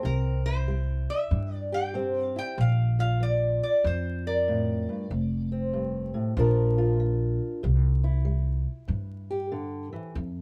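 Acoustic country blues with a soulful, gritty mood, this short cut from a longer piece swings at 95 BPM in 4/4 over a C, Bb and F progression. A fingerpicked old ladder-braced acoustic guitar with dark, boxy old strings and a thumpy pizzicato upright bass carry the accompaniment throughout, both up front. A metallic, nasal lap resonator guitar played with fingerpicks and slide takes the melody from 0.1 to 5.5 seconds, all captured live in one room with moderate studio reverb and vinyl crackle.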